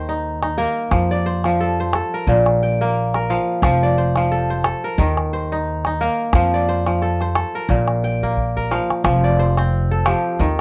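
Warm and hypnotic, this short cut of West African traditional string and xylophone music moves at 89 BPM in 4/4 with a lightly swung sixteenth feel in F mixolydian, led by a bright, ringing, fingerpicked kora playing crisp arpeggios up front with a cassette-tape coloring, underpinned by a woody, thumpy pizzicato upright bass on gut strings and a deep, close calabash that enters at 0.4 s, all set in light reverb with a homespun cassette sound, and a drum fill at 8.2 s leads into a new section at 9.0 s.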